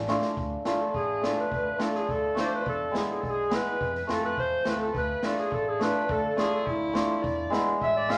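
A short drum fill on kick and snare opens this bittersweet, festive klezmer piece before a dark, roomy clarinet takes the solo at 0.4 seconds, carrying the melody in a classical style over a progression that moves from Dm through E and F. Up front, a shimmering hammered dulcimer rings out the accompaniment, while a nasal, earthy violin with light vibrato plays a distant second line in the background. Woody pizzicato upright bass and a street-band drum kit with a boomy kick and an airy, big-room sound anchor the groove, all set in wet studio reverb.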